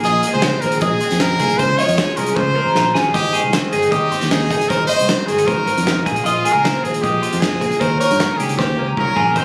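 Captured on a phone in the room and given studio reverb and compression, this short cut from a longer math rock and midwest emo piece has a light, roomy sheen and an intricate, bright mood at 154 BPM in a straight 4/4. Up front, a brilliant, forceful trumpet carries the melody with vibrato and a punchy, pop-style attack, ranging from F4 to Db5. Two clean, picked twelve-string electric guitars share the harmony: one sits in the background with analog chorus on a twangy accompaniment, while the other spins high arpeggios between G4 and Eb5 through a phaser. A fingered electric bass, direct and amped with a warm tone, enters at 0.1 seconds, and a loose acoustic drum kit with a fat snare, punchy kick and pumping room sound plays drum fills at 2.4 and 8.6 seconds. The chords move from Bbm11 to Abmaj9, then Bb9sus4 and Eb7.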